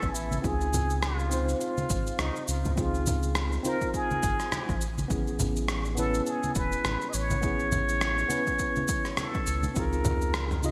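Opening on a breathy, plunger-muted jazz trumpet melody with delay, played up front over a worn, slightly out-of-tune tine electric piano with light overdrive, a round, deep analog bass, a gritty sampler-style soul drum kit of cabasa, rim click and toms in gated reverb, and a punchy overdriven electronic kick that drops out at 9.9 seconds, this blissful sunset chillout excerpt at 103 BPM adds soft-handed congas in the background from 0.3 seconds and drifts from Dbmaj9 to Amaj9 in Db major with a gentle 16th-note swing, all set in a lush hall reverb with a bright 1980s-style digital sheen.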